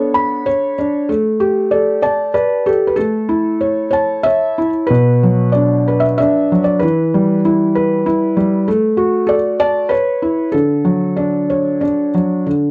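A gently swaying three-beat pulse, played with a loose, rubato feel, carries this sleepy, tender children's lullaby, heard here as a short portion of a longer piece. A felt-muted upright piano plays alone throughout, its mellow, intimate tone sitting up front with the soft patter of its action clearly audible, moving through minor-leaning harmonies that settle toward a major-seventh chord near 10.5 seconds. The dry, close recording has a vintage studio character, with little room sound around the instrument.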